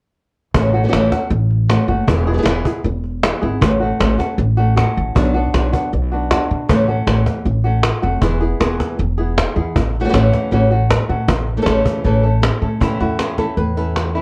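Worn, warbly cassette tape with drifting pitch and a snug small-room reverb colours this proud, fiery flamenco passage, cut from a longer piece, in A major at 156 BPM in straight 4/4. Up front from 0.5 s, a fingerpicked acoustic flamenco guitar carries the melody with audible finger squeak. It sits over a dark, thumpy pizzicato upright bass on gut strings and a woody cajon with faint snares, as the harmony moves between A6, E and Bm. At 12.8 s a second, brighter fingerpicked flamenco guitar adds short stabs as the chords settle on A.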